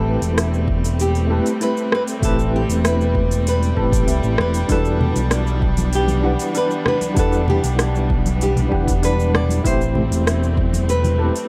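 A dark, lightly reverberant small-room production frames this wistful, relaxed sunset chillout excerpt at 97 BPM, drifting from Am9 to Em7 and back. A bright, fingerpicked nylon-string guitar carries the melody through tape echo, over a worn, slightly out-of-tune tine electric piano with medium tremolo and digital delay, clear bowed strings holding sustained chords, and shimmering steel pan arpeggios with delay in the background. A round, overdriven fingered bass sits up front beside a punchy, layered electronic kick and an overdriven R&B kit of cabasa, metallic hi-hat and rim click, while soft-handed congas join in the background at 5.0 s.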